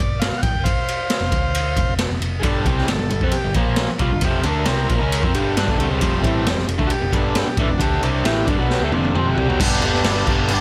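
A straight 4/4 pulse at 134 BPM drives this raw, swaggering garage rock excerpt, cut from a longer piece. The raw garage drum kit sits up front with a boomy kick, medium-tuned snare, crash, ride and toms, its sound saturated, gritty and mid-forward with a rolled-off top, and it throws in a fill starting at 8.7 seconds. Underneath, the hollow-body short-scale picked electric bass gives a dark, round, amped low end. The vintage combo organ carries the melody with a buzzy, clean tone and light vibrato, dropping out at 9.6 seconds as the harmony lands on G. After an opening that moves from F5 to Dm7 and back to F5, a bright, overdriven, double-tracked guitar riff arrives up front at 2.4 seconds as the harmony shifts to G5, then to F5 at 6.0 seconds and on to G, all set in a small room with light reverb.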